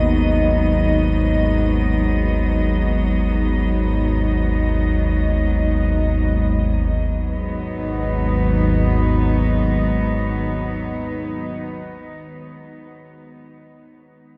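A deep, rumbling drone with a warbling, vintage edge sounds together with a cello section holding sustained chords in a reedy, gut-string period tone and an icy, crystalline glass pad with chorus high above, all entering at once to begin this ominous, vast dark ambient passage in free time and G# minor. At 6.9 seconds the pad falls away and very quiet gamelan-type bossed gongs take over with soft metallic, bronze arpeggios that beat gently until 11.6 seconds, when the drone also stops. The cellos carry on alone to 12.1 seconds, all of it sitting in a huge, dark reverb, in a short section cut from a longer piece.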